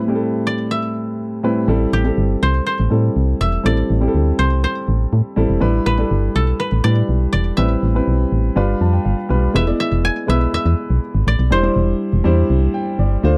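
A dry, close studio sound with light reverb frames this moody, urgent 1980s-style pop excerpt in straight 4/4. A woody koto played with fingerpicks carries the melody through a slapback echo over an intimate grand piano, whose action noise is audible and which adds a fill at 8.6 seconds before the harmony moves to E at 9.5 seconds. From 1.7 seconds, a punchy, round, dark FM bass sits up front beneath them.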